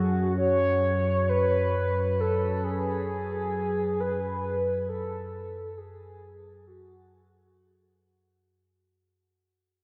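Dark ambient drone, ominous and unsettling, heard as a short excerpt cut from a longer piece that floats in free time. A horn-like synth lead carries the melody from the start. Its round tone is built from sawtooth and triangle waves, shaped by a filter sweep, a soft attack and vibrato, and dressed in lush chorus, shimmer reverb and tape echo. Beneath it, an analog drone sits low in a sawtooth and pulse-wave texture that evolves through pulse-width modulation, with a slow attack, long release and its own chorus giving it a mellow glow. Both parts stay up front within a wet cathedral reverb whose 6.5-second decay surrounds the sound. The passage fades out throughout, with the lead stopping at 8.0 seconds while the drone lingers until 8.6 seconds.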